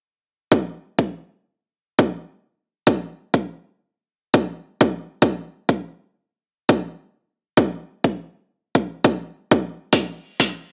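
A punchy electronic kick drum leads this funky, gritty glitch hop fragment, sitting up front from 0.5 seconds through to about 10.5 seconds. The kick sounds layered and produced, with a tape-warm body, a high-pass filter trimming its lowest reaches and a touch of studio reverb around it. The groove runs in 4/4 with a loose, swung sixteenth-note feel that gives it a bouncing, head-nodding lilt. Only near the close, at 9.9 seconds, does an electronic hi-hat arrive, a sampler-style hit that is compressed, pitched down and overdriven into a dirty, crunchy edge, also placed up front with its own studio reverb. The overall sound is fairly dry and dark, with the top end rolled off, and the whole passage is a single section lifted from a longer piece.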